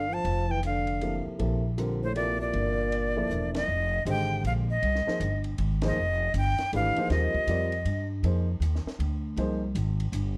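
Searching and hypnotic, this modal jazz waltz swings in 3/4 as a breathy, vibrato-laced flute carries the melody up front over a growly, woody pizzicato upright bass, while a distant, whispered trombone holds a second line until 3.5 s, a natural-toned baby grand piano accompanies from 1.0 s, and a compact cocktail kit with a high-tuned snare and tight kick plays a fill spanning the band accent at 3.5 s, set in light reverb with a dark production.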